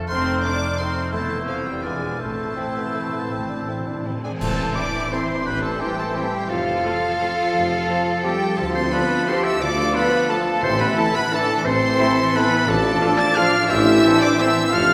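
A rich chamber violin section carries the melody of this bittersweet, sweeping orchestral ballroom waltz in 3/4 with a rubato feel, joined by a mellow, hollow silver flute, a clear oboe, a distant clarinet and a lush symphonic violin section on second lines, while a soft-attack bassoon and a very quiet viola section accompany, a ringing harp plays arpeggios, and dark French horns hold chords over cellos and double basses; hard-mallet timpani play a fill from 2.2 seconds as a bright cymbal swell, clash cymbals and concert bass drum sound, and at 4.4 seconds a very quiet tuba enters, followed at 4.7 seconds by trombones and punchy trumpet stabs, with the ensemble set in a reverberant concert hall.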